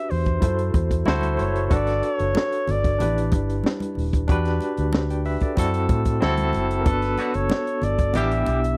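A breathy, whispered flugelhorn carries the melody with light vibrato and a tape echo in this smooth, cinematic slice of lush 1970s-style soul at 93 BPM in 4/4, moving over chords such as Am6, D7 and Gmaj7. Beneath it, a barky tine electric piano with fast tremolo sits up front through a combo amp, joined by a round, foam-muted fingered bass, a compact cocktail kit with a punchy kick and high-tuned snare, and ringing congas played with soft hands in the background. At 7.2 s a clear, tight horn section with tube saturation adds stabs for a band accent, all captured in a dry, close studio sound, in what is cut from a longer piece.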